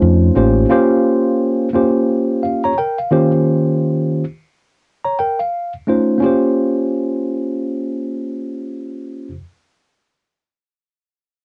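A worn, slightly out-of-tune tine electric piano sits up front in this cool, nocturnal hip hop fragment at 87 BPM in Bb dorian, its clean, direct tone colored by cassette tape as it comps through F7b13, Bbm69 and Eb13 from 0.0 to 9.4 s. A dark, round, punchy fingered dub bass sounds only briefly before dropping out at 0.6 s. Light reverb and a dull home-cassette sound, capped at 11.0 kHz, frame the lazy 16th-note swing, with a new section arriving at 6.2 s.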